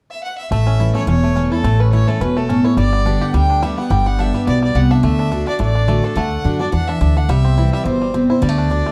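A driving, virtuosic bluegrass excerpt at 212 BPM in 4/4 with a swung eighth-note feel, where a clear, earthy bowed fiddle with light vibrato opens alone at 0.1 seconds and sits distant in plate reverb, joined at 0.5 seconds by a twangy, percussive fingerpicked banjo also carrying the melody in plate reverb, a full-bodied picked dreadnought guitar playing accompaniment, and a thumpy, woody pizzicato upright bass up front, all moving through A, G, D and C in a dark, lightly reverberant production.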